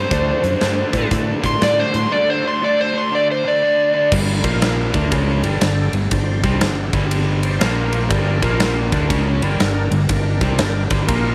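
A moderate spring reverb lends a roomy sheen to this brooding, gritty slice of blues rock and southern rock, swinging at 120 BPM in 4/4. An up-front, overdriven slide guitar carries the melody until 4.1 seconds, when the music settles into G minor, while a double-tracked, picked electric guitar riff, a round, amped fingered bass and a huge arena drum kit with bright cymbals and a punchy kick carry on beneath. In the background, a full, thick tonewheel organ holds sustained chords through a slow rotary speaker with chorus vibrato.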